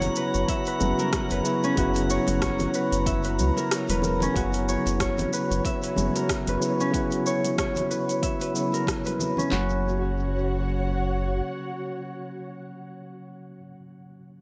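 Echo-heavy and steeped in plate reverb, this meditative, hypnotic organic downtempo excerpt at 93 BPM with swung sixteenths pairs a worn, lightly overdriven tine electric piano with a fingerpicked Celtic harp, which sits up front over a round, dark analog bass, while an ethereal, detuned pad pumps in the background, a glassy drifting-harmonics texture stops at 4.4 s, and a punchy deep house kit with claps and a deep kick joins at 0.5 s alongside metallic-hatted afro-pop drums and very quiet ringing congas, the kick dropping out at 3.7 s before a filter sweep on the pad follows.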